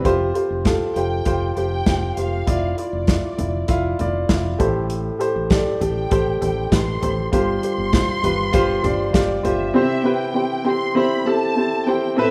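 An up-front, polished grand piano drives this hopeful piano pop excerpt at 99 BPM in 4/4, moving through Fsus2, Dmadd9/F, Am7 and G7sus4 before settling on C. A round, punchy fingered electric bass and an airy acoustic drum kit with a punchy kick and medium-tuned snare support it until about 9.7 seconds, while a lush, distant violin section carries the expressive, vibrato-rich melody from 1.0 seconds to the end. The rough home-demo mix sits in light small-room reverb.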